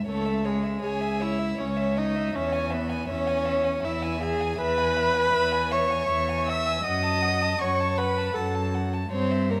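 In a reverberant recital hall, this solemn, elegiac fragment of a slow romantic movement for string quartet in 3/4 unfolds with rubato: a first violin, bowed sul tasto with light vibrato and an airy touch, carries the melody from the start; a pure, floating second violin traces a second line; and an up-front viola and cello supply rich accompaniment and a soft-attacked bass, all heard close over C#m harmony that shifts to D#dim/F# at 6.8 seconds.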